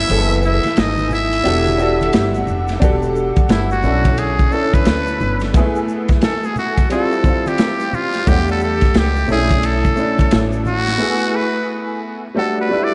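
A dreamy mix soaked in reverb carries this cool, nocturnal jazz-hop excerpt, where a soft-edged tenor saxophone with delay plays a brief background line that ends at 2.4 seconds while a buzzy, growling muted trumpet with delay moves into a raspy solo from 2.8 seconds over woody pizzicato upright bass, a vintage upright piano with ensemble chorus and long sustain, a crunchy, saturated breakbeat kit with punchy kick and dark cymbals, and soft-handed tube shaker and congas, before drums, bass and percussion stop at 11.0 seconds for a break.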